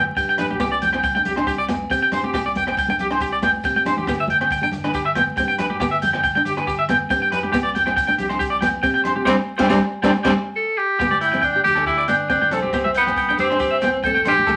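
A twangy, slightly broken-up electric guitar sits up front, spinning arpeggios with a tremolo shimmer through this carefree highlife excerpt at 138 BPM in a straight 4/4. Beneath it, a fingerpicked steel-string acoustic guitar adds finger squeak and a roomy auditorium tone, while a fingered electric bass plays direct and warm, moving between G and Csus2. A compact cocktail kit with a high-tuned snare and punchy kick keeps time alongside ringing agogo bells, hard-handed high-tuned congas and grainy, distant maracas in the background. During a band accent from 9.3 to 11.0 seconds, a clear tenor saxophone enters at 10.6 seconds, soloing up front in a vintage jazz style with vibrato as the harmony shifts to G5 and C5. Wet studio reverb and vinyl crackle give the whole recording a dusty, aged sheen.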